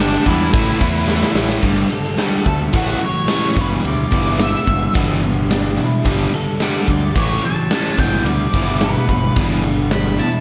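A dark octave-fuzz lead guitar with slapback echo carries the melody and breaks into a solo at 1.6 s in this brooding, cathartic quiet-loud alternative rock excerpt at 109 BPM in E dorian, driven by a double-tracked overdriven rhythm guitar riff, a round, fuzzed picked bass and an up-front arena drum kit with punchy kick, medium-tuned snare and bright cymbals that plays a fill at 1.1 s, while a twangy, slightly broken-up small-amp guitar adds chorused, echoed arpeggios in the background from 1.6 s, all set in a big arena-sized reverb.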